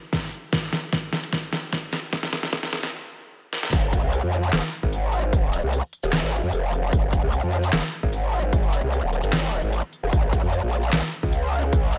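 A growling, detuned, saturated growl bass with chorus and overdrive crashes in up front at the drop at 3.7 s in this chaotic, menacing heavy wobble dubstep excerpt in F minor at 150 BPM half-time, after a build-up of drum fills, a filter sweep and a brief stop, over a punchy layered electronic kick and a tape-warm dubstep kit of deep snare, crisp hats, handclaps, shaker and crash, all set in a high-passed digital ambience.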